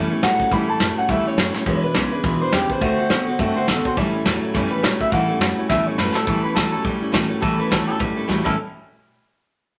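A soft brush drum kit sits up front in this rowdy, rollicking rockabilly cut from a longer piece, with a medium-tuned snare, tight kick, hi-hat and crash cymbal, and fills around 1.5 and 5.7 seconds. The tempo is a fast 208 BPM in 4/4 with a light swing on the eighths, moving through A7, E7 and D7 in A mixolydian. An electric guitar through a small old amp carries the melody with a twangy, slightly broken-up tone, while a clean, compressed electric guitar plays a riff bathed in spring reverb. A picked steel-string dreadnought acoustic guitar fills out the accompaniment with fresh, full-bodied strings, and a woody, thumpy upright bass with gut strings sits in the background. Moderate studio reverb gives the band a modest room sound, and the music moves into a new section at 6.3 seconds.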